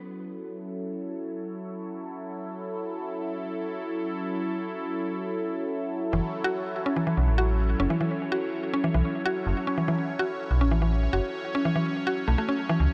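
Set in a light reverb and digital ambience, this melancholic, cerebral IDM passage opens with a swirling, detuned analog pad holding sustained chords through phaser and chorus, before a woody, round mallet-like synth pluck with tape echo and a metallic FM bass with tube saturation both enter at 6.1 seconds, the pluck spinning bright, percussive arpeggios while the up-front bass supplies fast-attack, decaying low notes.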